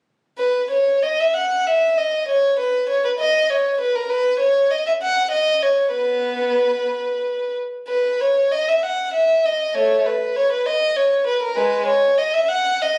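A 6/8 pulse at about 59-68 BPM, shaped with rubato, carries this serene, dance-like baroque-style suite movement for unaccompanied violin, a short excerpt in which a single warm bowed violin, close and up front with a soft attack, vibrato and expressive portamento, plays from 0.4 to 13.0 seconds across a range of G#3 to F#5, ringing in a moderate stone room that gives the phone-captured sound a studio ambience.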